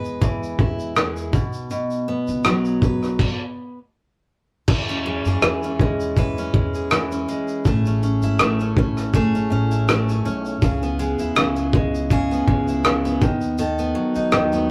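A cloth-damped, thuddy drum kit with muffled, dark cymbals, a tight kick, rim clicks and shaker sits up front in this easy-going, heartfelt acoustic pop excerpt at 81 BPM in E major, playing alongside a full-bodied picked dreadnought steel-string guitar and a woody, thumpy pizzicato upright bass, all pausing at a stop from 3.2 to 4.7 seconds before moving through Amaj7, C#m7 and B7 in a rough, small-booth rehearsal-room sound.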